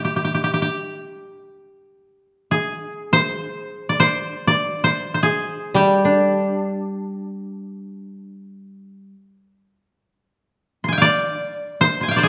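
A reverberant recital-hall sound surrounds this austere, calm fragment of Japanese traditional chamber music, in which an up-front, mellow, woody koto played with fingerpicks carries the melody throughout while a second, warmer koto adds a lower accompaniment only from 5.7 to 9.1 seconds.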